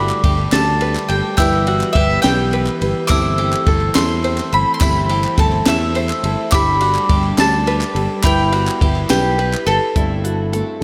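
In a steady 6/8, this hopeful indie folk excerpt builds around a bright, woody mandolin melody with slapback echo and analog delay, joined by a ringing, bell-like glockenspiel struck with hard plastic mallets, a boxy picked archtop guitar, a plunky open-back banjo playing arpeggios in the background, very quiet sul tasto chamber strings holding soft-edged chords, a round, up-front fingered electric bass, a compact cocktail drum kit with a punchy kick and high-tuned snare, hollow handclaps and a faint, jingly tambourine, before a dark, fingerpicked old ladder-braced acoustic guitar slips in at 10.0 s, the whole mix set in a lush hall reverb that gives a big arena sound.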